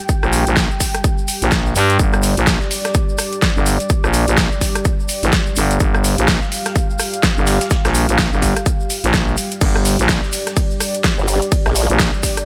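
A swung sixteenth-note groove in 4/4 drives this swaggering, bouncy bass house excerpt, built on a punchy, overdriven electronic kick up front and a big-room dance kit with a huge snare and metallic hats, backed by a gritty, very quiet breakbeat sampler-style kit and a grainy, bright tube shaker sitting close and dry in the background. A thick, growling FM bass anchors the low end with sidechain pumping under a moody, detuned analog pad of sustained chords that breathes with chorus and its own pumping. At 11.2 seconds a detuned, wobbling formant-sweep bass cuts in briefly, all set in a digital ambience.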